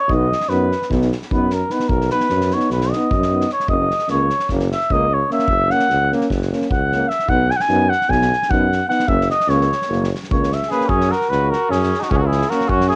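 The flugelhorn opens the clip at 0.0 seconds, up front with a vintage tone and light vibrato, carrying a virtuosic solo melody over a Balkan brass band groove in a brisk, straight 9/8. From 0.1 seconds the tuba anchors the bass with a warm sound and its own light vibrato, while a clear, soft-edged trombone and a dark, smooth-topped French horn sit in the background playing accompaniment figures, both touched by plate reverb and cassette grain. An acoustic drum kit with a punchy kick and a medium-tuned snare, played with bundle sticks, drives the exuberant pulse as the harmony moves between B and F#. At 10.7 seconds a clear trumpet slips in with a second line, just before the music shifts into a new section at 10.9 seconds. The whole piece carries the close feel of a home cassette recording in a booth, with a dulled top end that gives this short cut from a longer piece a homespun, old-time character.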